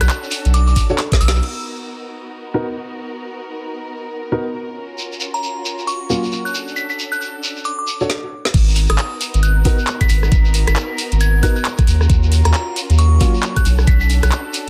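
A brief opening burst brings in muted violins, a glassy synth bell, a soft dub sub bass, garage drums and shekere together, with a knocking electronic kick joining at 0.8 seconds and a dark grand piano at 0.9 seconds. A drum fill and a band accent follow before most of the groove falls away at 1.4 seconds. This moody, late-night two-step garage cut runs at 135 BPM in 4/4 with a swung sixteenth-note feel. The veiled, con sordino violin section holds lush sustained chords throughout, pumping under sidechain, while the intimate grand piano, with audible action noise, plays short stabs through a low-pass filter that sweeps across the middle stretch. The grainy shekere returns around 5.0 seconds, and the crystalline FM bell follows with chorus and tape echo just after, as the harmony moves from Bmaj7 to F#maj7. After a second fill, the drop lands at 8.5 seconds on G#m9, with the round sub bass and the up-front kick rejoining the woody snare, metallic hats, handclaps and rim clicks. 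The dense, heavily limited mix stays dry and close.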